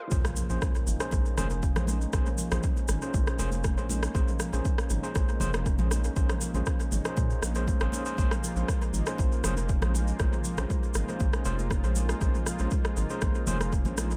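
A smooth, detuned sawtooth pad opens this afro house excerpt, and at 0.1 s the drop begins on a Bbm9 chord with a very quiet electronic impact that lasts until 2.1 s. Set at 119 BPM in Bb minor with a straight 4/4 feel, the groove is warm and driving. It is anchored by a punchy, layered, overdriven electronic kick, with a deep house kit of rim clicks and toms sitting in the background under overdrive, studio reverb and tape echo. A round, deep analog bass with a fast attack and a filter sweep carries the low end with sidechain pumping, and the pad adds chorus and tremolo alongside the same pumping. A ringing stainless-steel handpan plays meditative fingertip arpeggios through tape echo, while a gritty tine electric piano, played through a combo amp with medium tremolo, adds stabs. Grainy, saturated cabasa with tape echo and very quiet, bright congas struck with hard hands fill out the percussion, and the whole mix sits in an echo-heavy, high-passed digital ambience.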